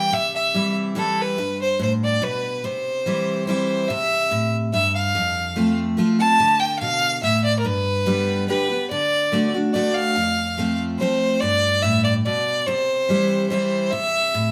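In a 3/4 at 144 BPM with a straight feel, this short bluegrass excerpt in C major has a rustic, joyful mood, with a clear, focused fiddle carrying the melody up front with light vibrato while a bright, full-bodied picked dreadnought guitar supplies the accompaniment, its finger squeaks audible. Both play together from the start to 14.5 seconds, moving through changes such as C, G, F, Dm and D before settling back on C near 12.7 seconds. The band sounds as if it is playing live in one room, with moderate studio reverb giving the pair a natural sense of space.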